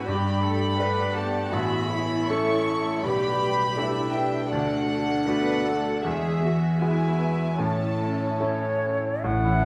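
In a rubato 4/4, this tender, uplifting cinematic film-score excerpt opens with a floating, pure violin section carrying the melody over a second violin line played sul tasto. A brilliant, intimate grand piano with audible action noise, ringing harp arpeggios, a dark, woody viola section in the background and a soft-attack cello section on the bass line fill out the accompaniment. An airy, up-front flute enters with its own line at 8.4 s, and at 9.2 s a mellow, distant French horn section adds sustained chords as a double bass section deepens the low end, all set in a wet scoring-stage reverb.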